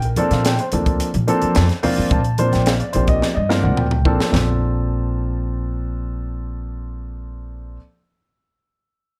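A dark baby grand piano, an upright bass and a crisp fusion drum kit open together on a major-ninth chord in this short cut from a longer electric jazz fusion piece, its mood funky and bright over a straight four-count. The piano sits up front with a mellow, long-sustaining voice in the accompanying role, while the plucked upright bass, also forward in the mix, sounds woody, growly and thumpy in its low register. The polished, airy kit carries a high-tuned snare and punchy kick along with hi-hat and toms, and it rolls into a fill at 3.2 seconds before dropping out at 4.5 seconds, just after a new section begins. Very quiet congas with a thick skin and soft hands slip in at 0.2 seconds and drop out of the texture at about the same moment as the kit. Piano and bass then carry on as a duo through the rest of that section, all of it framed by a light reverb.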